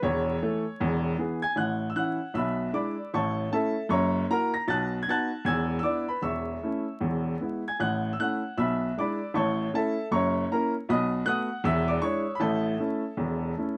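Exuberant and swinging, this short stride jazz passage, cut from a longer piece, features a lone upright piano in a swing feel. The piano's tone is brilliant and woody, with long sustain, and it sits up front, spanning from deep bass notes at E1 to high treble at A#6. After a brief opening, a new passage begins at 1.6 seconds and runs to the end at 13.8 seconds. The harmony circles through A, E7, F#7 and B7 before returning home to A. Close, detailed microphones catch the instrument in light reverb, while a layer of vinyl crackle gives the sound an old-record patina.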